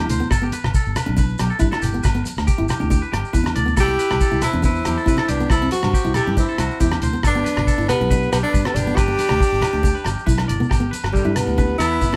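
A highlife guitar band groove, danceable and joyful, moving at a brisk straight four in a clip cut from a longer piece. A fingerpicked acoustic guitar with a bright, full-bodied jumbo tone and audible finger squeak holds down the accompaniment, while a clean, compressed electric guitar adds twangy picked arpeggios above it. A round, foam-muted fingered electric bass anchors the low end beside a cloth-damped, thuddy drum kit with a tight kick, hi-hat and rim click, plus a drum fill at 10.2 seconds. Congas with soft hands sit in the background with a small-room sound, while ringing agogo bells and grainy maracas sound distant in a large space. After a brief opening blip, two tenor saxophones enter together at 3.8 seconds: a close-miked, subtone lead with scooped notes carries the melody up front, and a clearer horn with light vibrato plays a second line behind it. The harmony moves from G to C and back to G, and the band plays live in one room with light reverb.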